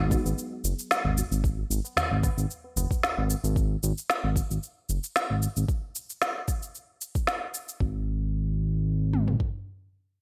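A smooth, detuned sawtooth synth bass opens this hypnotic, meditative organic downtempo excerpt, sitting up front with tube saturation, while a deep, nasal chord stab on G#m7 lies in the background with chorus, sidechain pumping, digital delay and a filter sweep that ends by 1.4 seconds. An overdriven electronic kit with a soft kick and toms plays alongside an electronic cabasa and woody snare carrying gated reverb, all on a lightly swung 16th-note feel, and a low-tuned, close, dry tabla with a short ring sits in the background until 3.4 seconds. At 7.8 seconds the cabasa and snare stop and the harmony falls away, leaving the bass and kit under light reverb in a bright 1980s-style digital production.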